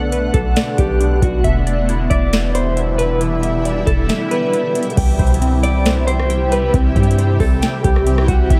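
An overdriven analog drum machine booms up front, its deep kick, crisp snare, metallic hats, rim clicks and crash cymbal carrying the grit of a small room in this spacious, melancholic slice of atmospheric cloud-rap, cut from a longer piece and set at 136 BPM in a half-time 4/4 feel. Beneath it, a deep 808-style bass with a sine core and a faint noise layer hits fast and decays mellowly, sitting as the loudest part of the mix. A shimmering, ethereal pad holds sustained chords with an octave-up sparkle, slow attack and long release, its granular texture colored by chorus, phaser, reverb and sidechain pumping. Detuned, wave-folded digital keys add glassy arpeggios through chorus, delay and a filter sweep, while a dark, fingered electric guitar at the edge of break-up enters at 0.3 seconds with a tremolo-and-delay melody. The harmony moves from Bm7 to Em7, the kick drops out at 4.1 seconds, and a new section arrives on C at 5.0 seconds, all set in light reverb and tuned slightly below standard pitch.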